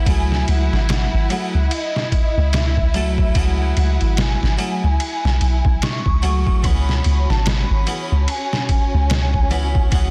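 A deep, round 808-style bass anchors this dark, hypnotic trip hop excerpt with a swung sixteenth feel, sitting up front beside a gritty, pitched-down sampler drum kit of thumpy kick, snare and ride, while a brilliant, airy harpsichord with harmonic tremolo and tape echo, a lush bowed violin section, and a pure, breathy, warbling sine lead with chorus and tape echo move from F#madd9 to C#m7 at 6.6 seconds, and a faint, flickering granular texture drifts into the background at 7.2 seconds, all within a dense, heavily limited modern master.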